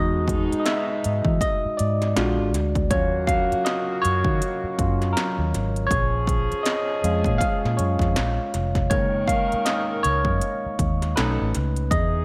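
A barky tine electric piano, lightly overdriven through a combo amp with a phaser, leads this sensual, relaxed neo-soul R&B excerpt at 80 BPM with a 16th-note swing, accompanied by dark, vintage saxophone section stabs with light vibrato and a round, foam-muted fingered electric bass. An electronic drum kit enters at 0.3 seconds with a heavy kick, clanging snare and crisp hats, tape-warm and re-recorded in a large room, sitting up front beside the piano. The harmony moves through Emaj7, D#m9, A#m7 and F#69 to B9, all under light reverb and digital ambience.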